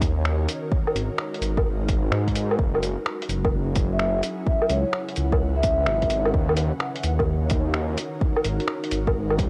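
Future garage at 128 BPM with a 16th-note swing, wistful and nocturnal, where an ethereal, airy pad with ensemble chorus and pumping sustains chords from D#m7 through G#m9, F#9 and C#m7 over a menacing, detuned saw bass with tube saturation and a filter swell, an overdriven, deep electronic kick and a muffled, tape-warm sampler kit of cabasa, finger snaps, hi-hat and woodblock, while a ringing soft-mallet vibraphone with tape echo enters briefly from 3.9 to 6.2 seconds in this short cut from a longer piece.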